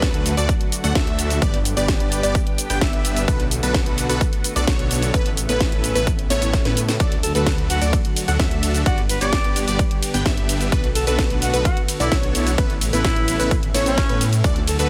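Festival progressive house with a euphoric, anthemic lift, this excerpt from a longer track runs in a straight 4/4 at 129 BPM over a D, G, Bm7, Aadd9 cycle. A punchy, overdriven electronic kick sits up front, joined by a house kit of hi-hat, ride, shaker and a cracking, tape-warm snare that sounds re-recorded in a small room, with a drum fill at 6.5 seconds. Beneath it, a thick, beating detuned saw bass growls with a menacing edge, while a huge, compressed supersaw riff carries vintage 12-bit sampler grit and tape echo. A catchy plucky unison lead spins arpeggios through a moving notch and filter sweep, and a lush, warbling pad holds sustained chords with chorus in the background, the synths and bass all breathing with sidechain pumping. At 7.2 seconds a distant, roomy alto saxophone enters with a classical-style solo melody, its vibrato trailed by tape echo. The mix is dry, with little reverb.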